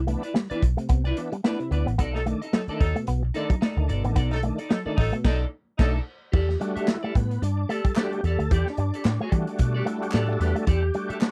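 A swung sixteenth-note funk groove at 110 BPM in 4/4 sets a cool, funky mood in this fragment of a longer piece, driven by a crunchy breakbeat kit with a tight kick, medium-tuned snare and dark cymbals, up front beside a round, foam-muted picked bass. A clean electric guitar with lush chorus adds picked accompaniment, while a second guitar through an envelope filter plays a compressed, fingered riff. An overdriven tonewheel organ punches gritty stabs with key click, chorus vibrato and a slow rotary speaker over Cmaj9 and B7#9 chords, and a mellow, distant horn section joins at 2.1 s with a tight second line. After a band accent, the organ takes a solo over Em11 from 6.3 s, and hollow, band-limited group handclaps sit in the background from 6.9 s. The sound is a dry, close 1970s-style studio recording.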